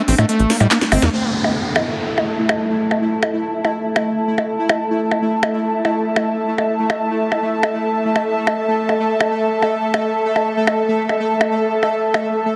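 Alien and intense, this psychedelic trance excerpt opens with a pulsing, tempo-synced gated texture holding sustained chords with chorus, joined by a squelchy, screaming distorted acid line and a tight, punchy sequencer bass over a layered techno drum kit with a cracking snare, smooth hats, handclaps and percussion blips, and a drum fill ends that opening before the acid line and bass stop at 1.1 seconds. From there, the gated texture carries on, an electronic downlifter sounds until 4.5 seconds, and an airy, breathy pad with a nasal, detuned edge enters at 1.5 seconds. The whole is bathed in wet plate reverb and squeezed into a heavily compressed, radio-like sound.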